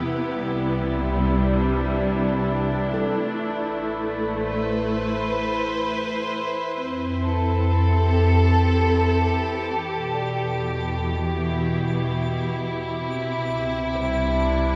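Ambient piece in E phrygian, reflective and spacious, moving at a slow 55 BPM in 3/4 and heard as an excerpt from a longer work. A rich studio string section sits up front with smooth, vibrato-laden bowed chords through the progression C, Am, Fadd9, Em and back to C, while a low-pass filter softens its edges. Beneath it, a deep, rumbling drone with a dark, ominous character carries the bass, colored by a phaser and its own reverb, and a reedy, breathing pedal harmonium holds a drone in the background. A very quiet handpan adds mellow, ringing arpeggios from the start until 3.7 seconds, then returns at 10.1 seconds alongside a twinkling granular texture that sparkles high on D6 with an octave-up shimmer as it fades in. The whole mix is echo-heavy, bathed in a wet spring reverb.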